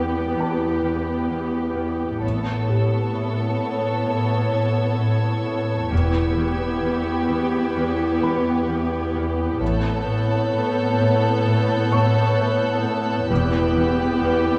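Mysterious and uneasy, this cinematic excerpt moves at a slow, straight pulse in 4/4, drifting between Em and Aadd9. A concert harp carries the most prominent part, a low, ringing fingerpicked riff that sits alongside a veiled, con sordino cello section on the bass line. Above them, a muted symphonic violin section sings the melody with soft-attack vibrato, shadowed by a second muted violin section on a supporting line and a smooth-topped viola section holding the accompaniment. At 2.2 s a bowed chamber double bass section joins underneath, while a faint, high violin section texture enters at the same moment. Tucked far in the background, a felt-muted upright piano adds a mellow, intimate layer with audible action noise, all set within a dark production and a moderate scoring-stage reverb.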